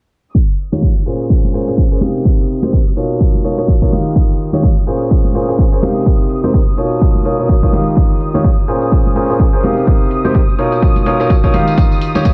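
Light small-room reverb surrounds this euphoric, feel-good piano house excerpt at 126 BPM, swung on the 16ths in Eb mixolydian: a punchy, tape-warm kick sits up front with a clear, intimate baby grand riff that enters at 0.7 s with audible action noise, long sustain, diffuse ambient delay and sidechain pumping, while a background hi-hat and acoustic tambourine and congas fill out the groove, a dark, veiled con sordino string section holding sustained chords shares the pumping, and both piano and strings move under filter sweeps across a cycle of Eb9, Bbm9, Cm7 and Bmaj9#11.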